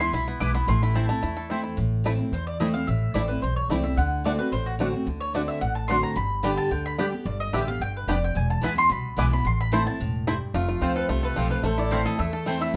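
Driving and haunting, this bluegrass excerpt in A minor races along at 219 BPM in a straight 4/4, with an up-front picked mandolin carrying the woody, double-strung melody over a full-bodied dreadnought guitar, twangy banjo arpeggios played with fingerpicks, and a thumpy pizzicato upright bass. A second, brighter mandolin adds picked stabs, returning at 6.4 seconds, while the chords move from Am through D7 and G before a shift to F at 10.5 seconds. Moments later, a metallic, nasal lap resonator guitar enters in the background with a slide line, all set in light reverb.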